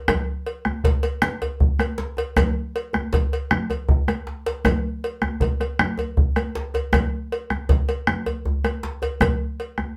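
A 12/8 pulse at 105 BPM, counted in dotted quarters with a straight feel, drives this powerful, earthy West African traditional drum ensemble piece, cut from a longer performance. The bombo has a round, close and dry tone. A tight, cracking djembe sits up front, compressed and saturated. High-tuned congas ring out under hard hands, while a metallic cowbell cuts through from start to 9.8 seconds. A drum fill between 4.1 and 4.7 seconds briefly breaks the groove. The whole group plays live together in one room, and a wet studio ambience lends the close-miked drums a sense of shared space.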